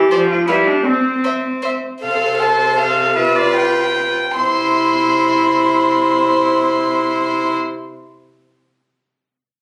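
Captured on a phone in a large studio, with club-style reverb and compression, this cheerful, lively classical-period string quartet excerpt in 3/4 moves with a flexible rubato feel and slows between 1.4 and 4.4 seconds. A dark, nasal first violin carries the melody up front, while a second violin with an airy bow plays a close, narrow second line. Beneath them, a rich viola with light vibrato supplies the accompaniment and a reedy, gut-string cello holds the bass, all four players bowing in period style.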